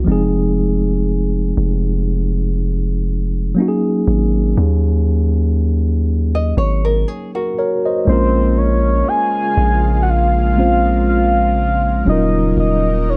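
Late-night, sensual R&B with a gentle swing, cut from a longer piece, built on a mellow, clean tine electric piano and a deep, long sustained 808-style bass, both up front. A dark, fingerpicked nylon-string guitar with digital delay adds brief arpeggios, finger squeak and all, before a round, full-bodied octave-layered synth lead with chorus, phaser and vibrato takes the melody at 8.1 seconds. An ethereal, airy pad drifts in behind it at 8.7 seconds, its slow-attack chords softened by ensemble chorus and built-in reverb, within a dry, close mix with a rolled-off top end.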